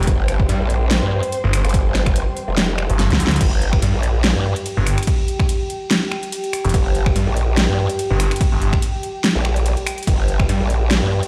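A dry mix, played through a big sound system in a bare stone room, carries this aggressive, chaotic slice of heavy wobble dubstep at 144 BPM in a swung half-time feel, tuned to A4 = 437 Hz, where a snarling, detuned saw bass and a bright, wobbling, formant-filtered growl bass sit up front over an overdriven, punchy electronic kick and a tape-warm dubstep kit with a huge snare, metallic hats, crash cymbal and finger snaps, while a deep, moody ambient pad with chorus and sidechain pumping hangs underneath, and a woody, low-pass-filtered string section bows sustained, pumping chords on G5 in the background until a drum fill at 3.0 seconds leads into a second drop on a rootless Fsus4 at 3.4 seconds, where the strings stop.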